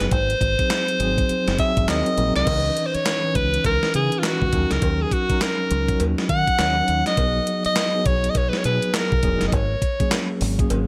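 Confident and slick, this short new jack swing excerpt at 102 BPM in C# dorian sets an edgy, up-front alto saxophone with scooped notes over a mellow tine electric piano, a dark, round fingered electric bass and a thumpy 80s digital drum machine with gated reverb on its snare, while a metallic cowbell joins in the background at 2.5 seconds as the harmony moves from G#7 through C#m9, D#m7 and B6 to G#9sus4.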